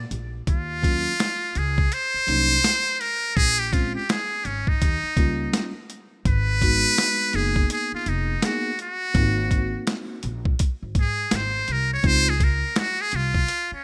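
Swung 16ths at 83 BPM in 4/4 drive this cool, mellow jazz-hop excerpt in Eb dorian, where a gritty, pitched-down boom bap sampler kit with a thumpy kick and high-tuned snare sits up front beside a buzzy, thin trumpet with metal mute soloing with light vibrato from 0.5 seconds, while a woody pizzicato upright bass and a worn, slightly out-of-tune tine electric piano accompanying from 0.8 seconds fill out a rough home-demo mix with studio reverb over chords moving from Ebm9 to Dbmaj7.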